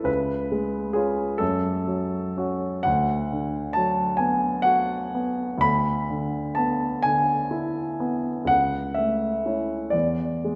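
A polished, up-front grand piano with a warm, present tone plays alone in this dreamy, nostalgic fragment of a longer romantic classical nocturne, its slow, uneven 6/8 pulse stretched by rubato as the harmony drifts from C#7 to F#m through Bm/D, E7/D and A/C# before reaching E7 at 9.9 seconds, heard in a wet concert hall whose long reverb lingers around the notes.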